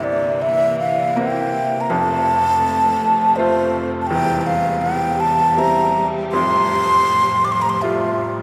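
A breathy baroque flute carries the melody up front, its wooden, straight tone soft in attack and slightly unsteady, over a bright upright piano with audible action noise and a lush, bowed string section holding sustained chords. This Celtic slow air in three, played with a free, rubato feel, moves through C7, F, C/E and Fadd9 in a longing, haunting mood. A wet cathedral reverb with a 6.0-second tail places the 8.4-second fragment in a resonant church or concert hall.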